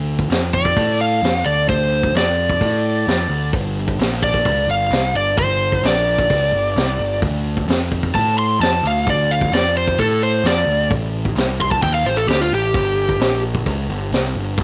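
Blues rock in the power trio mould, with a southern rock edge, this gritty, raunchy clip is cut from a longer piece and driven by a straight 4/4 groove. A fuzz-laden picked electric bass opens at 0.0 s, its overdriven tone sitting up front and rumbling through the low register. A vintage drum kit joins at 0.2 s with a punchy kick, a high-tuned snare and hi-hat, its mid-forward sound captured in a studio room with a rolled-off top. From 0.5 s an overdriven slide guitar, played with fingerpicks, carries the melody as a solo, ringing high and raw above the rhythm section. The harmony moves from D5 to Gm, back to D5, then to Am7 and Gm, all wrapped in a light reverb.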